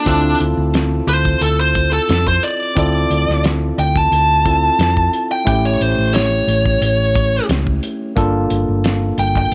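A smooth, overdriven lead guitar opens this smoky, soulful straight-eighth soul blues excerpt with a picked, up-front solo. It is backed from the start by a barky electric piano played through a combo amp. A fraction of a second later, a dark, round hollow-body bass and a cloth-damped, thuddy acoustic kit join, the kit bringing a fat snare, tight kick and gritty, saturated small-room character with a rolled-off top. Over a studio ambience, the harmony moves from Dm7 to A7 at 5.5 seconds and settles on Gm7 at 8.2 seconds.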